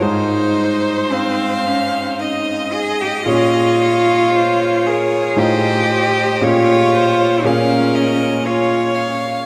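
In a rubato 3/4 at roughly 54-61 BPM, this serene, romantic classical excerpt sets a vibrato-rich solo violin melody above a smooth, clear second violin and a focused, up-front cello line that drops out at 9.0 s, while an intimate grand piano with audible action noise and long sustain accompanies through chords moving from Ab to Bbm7 and F7/A, all bathed in a vast, echoing cathedral reverb.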